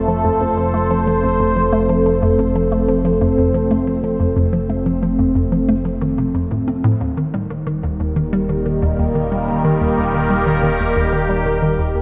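Mysterious and cosmic, this sequencer-driven ambient space music places a resonant, warbling sawtooth pad with lush chorus up front, over a hollow, bouncy square-wave pluck riff treated with chorus and analog delay and a fat, detuned analog bass, in a dreamy mix soaked in plate reverb, as the harmony moves from F to Eb at 7.0 seconds before a fade-out from 10.5 seconds.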